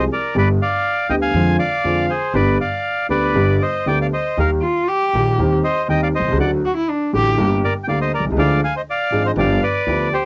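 This home cassette recording has the snug feel of a small booth, with a short, moderate ambience around the players. It is a dramatic, passionate tango excerpt in a loose, rubato four, cut from a longer piece. The reedy, bright bandoneon carries the melody close-miked, dry and full, its tone colored by cassette tape. Beneath it, the concert grand piano accompanies up front with deep bass and long sustain, while an upright bass played pizzicato on steel strings adds a woody, growly low end. At 4.6 seconds a single bowed cello enters with a nasal, expressive second line full of vibrato and portamento, then stops at 7.5 seconds, as the harmony moves through G, Eb and D toward a closing G7.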